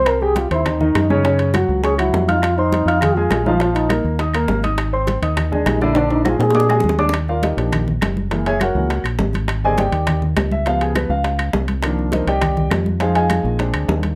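A breathy, whispered trombone opens this Afro-Cuban jazz excerpt with a dark, intimate solo, set back in the room with a light vibrato and soft attack, before it stops at 7.0 seconds. At a brisk 204 BPM in straight 4/4, the mood is sophisticated and danceable. A grand piano sits up front throughout, supplying accompaniment under the trombone and then taking its own solo from 7.1 seconds to the close. Beneath them, a punchy, round fingered electric bass stays up front. Behind it sit bright, high-tuned congas, low-tuned bongos and dry, woody claves, while ringing metal-shell timbales join in, and a drum fill arrives just before the piano solo. The harmony moves through rich jazz chords such as Abmaj9#11 and Db7#11, and a moderate club reverb gives the band a lively room sound.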